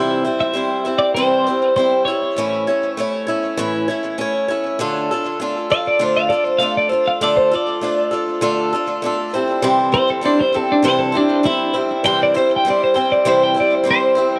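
A straight 4/4 pulse at 99 BPM carries this dusty, wistful rock fragment in D minor, moving through C, A and Dm before returning to C at 9.3 seconds. A clean, twangy twelve-string electric guitar sits up front with the melody, its compressed tone shimmering through harmonic tremolo and tape echo, and from 4.8 seconds it takes a solo. Underneath, a boxy, bright, picked swing-style acoustic guitar supplies the accompaniment, also treated with tape echo, all set in an echo-heavy mix with a moderate plate reverb.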